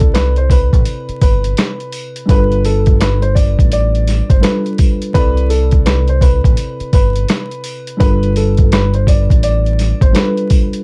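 A swung boom-bap groove at 84 BPM in 4/4 opens this moody, tough hip-hop excerpt, with a gritty, pitched-down sampler kit of thumpy kick, medium-tuned snare, hi-hat and rim click sitting up front beside a round, punchy fingered electric bass. A dark, woody upright piano carries the mellow melody through plate reverb and delay, while a worn, slightly out-of-tune tine electric piano with a cassette-tape tint comps over alternating C6 and G7 chords. Faint jingly sleigh bells enter at 0.2 seconds in the background, and the whole dark, dry production is dusted with vinyl crackle.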